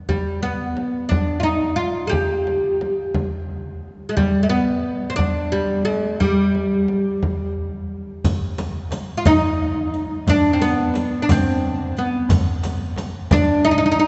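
Bathed in a long, wet church reverb with a dulled top end, this passionate fragment of a Persian modal ensemble piece in dastgah homayun on G moves at 59 BPM in a straight 6/8, led by a woody, deep, up-front fretless oud plucked with a plectrum on double strings over a close, dry frame drum played with soft hands, until at 8.2 seconds a very quiet, hard-handed tombak and a riq with dark jingles join in.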